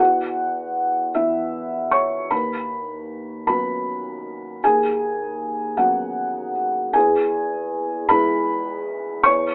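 This is a brief, peaceful stretch of neoclassical minimalist piano, cut from a longer piece and lasting about 9.5 seconds. A single felt-muted upright piano plays alone throughout, in 6/8 at 52 beats per minute counted in dotted quarters, with a loose, rubato feel in B major. The thick felt gives the instrument a soft, dark, mellow tone. The audible action noise keeps it intimate and close, set up front across a range from D#2 to C#6. The harmony opens on E5, shifts to Badd9/D# at 2.3 seconds and settles on E at 6.9 seconds. The piano sits in a small room with a moderate, short reverb, captured live in one space, and the recording carries a narrow, telephone-like coloring.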